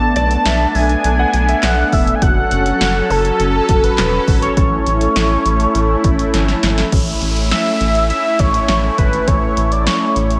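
A dreamy mix soaked in lush hall reverb frames this upbeat yet wistful synth-pop excerpt, set in A major at 102 BPM in a straight 4/4. A bold, retro octave-doubled sawtooth lead carries the melody throughout, with chorus and analog delay. Beneath it sit a bright, airy resonant pad holding sustained chords and a mellow, round synth brass part that stops at 6.9 seconds. Down low, a rubbery, hollow square bass sits up front beside a punchy analog drum machine of kick, snare, hi-hat and handclaps, with a short room on the snare, clap and hats, and a drum fill leads into the second section. Near the start, a concert grand piano with audible action noise adds a brief, intimate second line in the background, touched with analog delay. The chords move from Bm7 to F#m to A, and an electronic downlifter fills the closing stretch.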